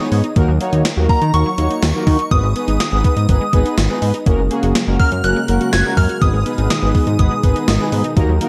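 An upbeat yet wistful synth-pop clip at 123 BPM in a straight 4/4, moving through D#m, G#m and F#add9 under a dark, warm production with light reverb. A shimmering, dreamy FM bell carries the high melody through ensemble chorus and tape echo, over brassy, nasal analog synth brass chords, squelchy resonant blip-pluck arpeggios set in the background, and a fat, detuned analog bass sitting up front with a gated 80s digital drum machine whose thumpy kick and gated-reverb snare punch through. At 4.3 seconds an evolving, slow-attack resonant pad joins behind the others with sustained chords.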